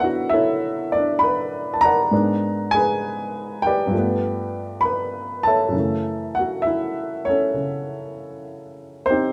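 Relaxed and swinging, this brief solo jazz fragment from a longer piece features a dark, woody, intimate upright piano with short sustain and audible action noise, sitting up front in a rough home demo mix with light reverb as it moves through Bm9, G#m7b5, G9 and F#m7 over 9.3 seconds.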